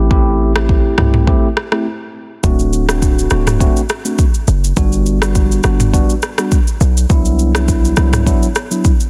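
A punchy, heavy 808-style bass with a sine tone, a noise layer, a fast attack and a decaying tail sits up front in this sunny, breezy afrobeats excerpt with a light swing. It is paired with an electronic afro-pop kit built on a deep kick, rim click, shaker and toms, with soft clipping on the snare, while a mellow, clean tine electric piano with phaser plays chords moving from Am7 through D7 and Gmaj7 to Cmaj9#11. The piece opens on a break that runs to 2.4 seconds, set in a digital ambience under a dense, heavily limited modern master.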